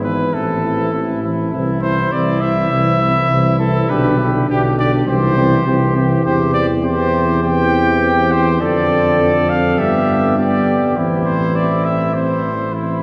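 A classical brass quintet enters together in a triumphant, freely rubato passage cut from a longer piece, the clear trumpet carrying the melody up front over a distant, roomy second trumpet, a background French horn with vibrato, a dark, smooth-topped trombone with light vibrato, and a soft-attacked tuba anchoring the bass. The harmony moves from A minor through C and G/B, passes Dm7/F and G, and settles back on A minor at 11.0 s. A long cathedral reverb places the ensemble further back in a resonant, glowing space.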